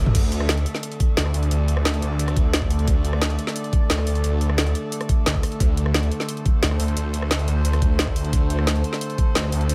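Mechanical and tense, this dark technical drum and bass excerpt at 176 BPM drops in at 0.1 seconds with an up-front knocking, overdriven electronic kick and a layered kit of woody snare, bright hats, rim clicks, toms and crash, all riding a growling, detuned sawtooth bass with a moving notch, while an eerie, inharmonic FM drone with ring modulation, chorus and sidechain pumping hangs behind in a digital ambience.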